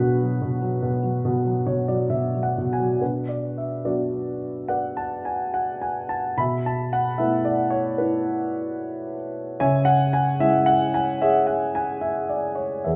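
A dark grand piano opens on a B minor chord, playing alone in this short, reflective classical piece that is cut from a longer work. The mood is melancholic and unhurried, moving at about 73 BPM in 4/4 with uneven beats and a rubato feel that lets the phrases breathe, all in B dorian. Between 1.2 and 3.0 seconds the piano adds a brief fill before the music moves into a new section that carries through to the end at 13.0 seconds. The harmony passes from B minor to an Esus4 over B at 6.4 seconds and then to C sharp minor, with the playing spanning from E2 up to B5. The piano's mellow tone and long sustain sit up front, framed by moderate recital-hall reverb that suggests a church or concert hall.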